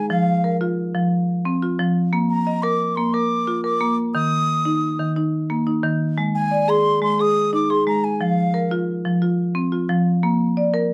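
Hypnotic and rippling, this short cut from a longer southern African traditional piece in a 12/8 mbira-style interlocking cycle sets an up-front marimba, woody and percussive under hard mallets with a vintage, band-limited edge, playing arpeggios throughout, while an equally forward baroque flute, airy and bright with tongued notes and unsteady vibrato, carries the melody until 8.7 seconds, the whole framed by a dark production and moderate studio reverb.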